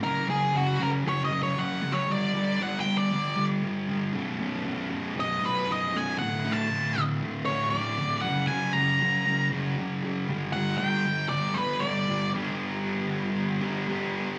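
An octave-fuzz lead guitar takes a solo from the start, its dark, picked tone carrying the melody through distortion and a slapback echo before it drops out at 12.3 seconds. Beneath it, a thick fuzz guitar, double-tracked and warm, drives a distorted riff that continues alone until the clip ends at 14.4 seconds. Both guitars sit up front in this restless, bittersweet rock fragment, moving at 117 BPM in a straight 4/4. The harmony cycles through F#5, G5, B5 and D5 power chords, landing on G as the closing section begins. The sound is that of a live gig heard through the venue's PA, wrapped in a wet club reverb, and the clip is cut from a longer piece.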